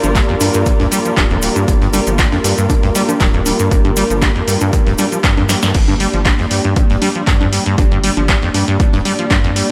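Soaked in dreamy hall reverb, this raw, trippy acid house excerpt in G minor at 118 BPM rides a lightly swung 4/4 groove, with a punchy up-front electronic kick and an analog drum machine of congas, crash, handclaps, hi-hat and snare, a very quiet acoustic jazz kit adding hi-hat and snare, and a grainy cabasa; a squelchy, resonant sawtooth acid bass riff with chorus and delay sits out front over a round, deep background bass and a moody, detuned pad of sustained chords that pumps to the kick, while veiled con sordino strings play in the background until the cabasa and strings drop away at 5.7 s, just after a drum fill at 5.5 s.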